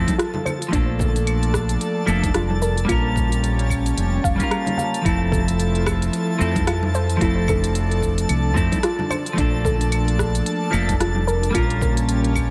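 A bright, twangy clean electric guitar with sampler grit and delay opens this blissful sunset chillout excerpt, alongside a breathy, chorused pad, a round, punchy fingered bass up front, and a sparkling granular shimmer high above. A gritty, thumpy kick and a smooth, tape-warm R&B kit of hi-hat, rim click, cabasa and claves arrive in a gently swung sixteenth feel, together with ringing congas in the background. A soft, dark pluck adds chorused, delayed arpeggios as the harmony drifts from Fmaj7 through Bbmaj7 to Bbm6 in a light reverb.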